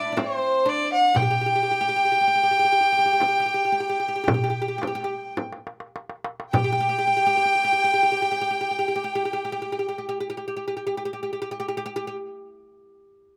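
Festive and warm, this Arabic maqam ensemble piece moves in 10/8 at 101-124 BPM counted in eighths, tuned to A4 = 444 Hz, and is cut from a longer performance. A single bowed violin carries the melody up front, its tone rich, pure and floating, with a soft attack and a distant quality. Behind it, a bowed studio violin section plays a second line in the background, smooth and even with vibrato, while a bright, woody fretless oud with double strings, plucked with a plectrum, adds another line; both the oud and the section carry a slapback echo. A clay-shelled darbuka with natural skin sits close, and a small, bright frame drum sits close, dry and up front; both are played with soft hands. The opening slows down and closes with a drum fill from 5.4 to 6.5 s. Recorded outdoors with little reverb, the sound stays direct, and the oud rings on alone to 12.2 s.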